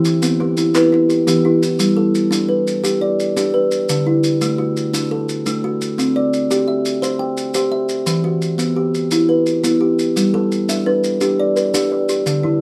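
Rippling and warm, this southern African traditional mbira-style cycle moves at 115 BPM in a straight 12/8 feel in G major over Em, G, D and C chords, with an up-front, woody kalimba ringing out arpeggios throughout; a second, soft kalimba with a short, boxy tone sits in the background until 2.0 seconds and returns at 10.3 seconds, grainy, band-limited maracas play underneath, a close, hollow group handclap is heard only briefly near the start, and a moderate studio reverb surrounds the sound.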